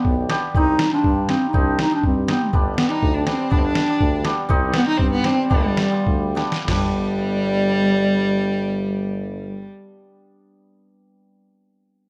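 Close, detailed microphones and light reverb frame this soulful, bittersweet klezmer fragment in G major and 2/4, moving between 92 and 122 BPM, where a dark, breathy clarinet carries the melody in a whispered, intimate jazz-style subtone with scooped notes, over a shimmering, ringing hammered cimbalom and a roomy, classical-style tuba bass, while a smooth, distant bowed violin adds a second line from 2.8 s and a gritty, pitched-down sampler-style trip hop drum kit with a thumpy kick sits up front as the tempo slows from 4.5 s, before a drum fill at 6.4 s closes out its part.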